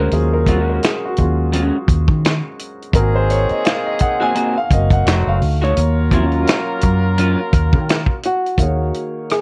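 Worn, warbling cassette tape with light reverb colours this sultry, late-night R&B and neo-soul excerpt, where a deep-bassed concert grand piano takes a solo over a dark, foam-muted fingered electric bass with transformer saturation, a dry soul drum kit of finger snaps, hi-hat, tight kick, rim click and snare, and a slightly broken-up electric guitar in lush chorus, while a clear vintage horn section adds octave-doubled stabs from 2.9 s and a thumb-plucked flamenco guitar with slapback echo carries the melody from 8.3 s.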